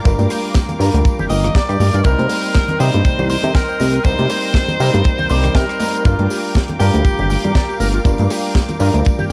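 Cut from a longer piece, this home cassette recording has a light reverb over a groovy, sensual nu-disco track with a gently swung sixteenth-note feel, moving from Gm7 to Cm7 and back. An up-front tight kick and a dry, polished funk kit with high-tuned snare, hi-hat and rim click ride over a glossy, retro chorused synth bass with a plucky filter, while tambourine, congas and bongos add small-room acoustic color. A clear vintage grand piano and a distant, richly bowed string ensemble pump with sidechain alongside a twangy envelope-filtered guitar riff set in the background, and from 1.3 to 7.8 seconds a bright, forceful tenor saxophone carries the melody with vibrato and tape echo.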